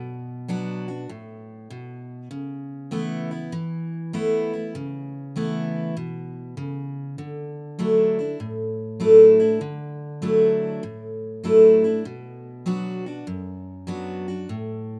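A lone picked steel-string acoustic guitar, bright and full-bodied with the dreadnought's up-front presence and audible finger squeak, carries this lonesome, brooding country excerpt in B minor at 99 BPM with a swung feel, moving from Bm through Aadd9/C# and Dadd9 back to Bm in a small, rough home-demo room before the harmony drops away at 14.5 seconds.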